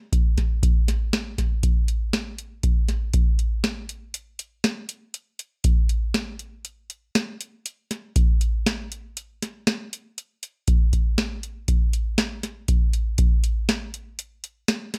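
Intricate and driving, this progressive instrumental excerpt moves at 119 BPM in a straight 5/4. A booming analog drum machine carries it from 0.1 seconds, its deep kick, tonal snare and metallic hi-hats sitting up front with a tape-warm grain. The sound is dry, and a new section takes over at 3.1 seconds and runs to 15.0 seconds.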